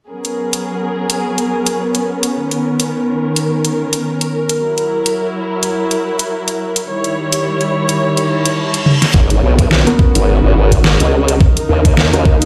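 A dark, woody string section with lo-fi sampler grit and sidechain pumping opens this swaggering, gritty glitch hop excerpt in G# minor at 106 BPM with a swung 16th feel, joined at once by an overdriven pop kit with a deep snare, hi-hat and toms. A reverse cymbal and drum fill then lead at 9.1 seconds into a new section where a knocking electronic kick and an up-front formant-sweep wobble bass with chorus arrive, while a mellow, boxy baby grand adds delayed stabs in the background, all over a G#m11, Bmaj9, F#7 and D#7b9 progression that returns to G#m11 and Bmaj9, in a stone-room ambience.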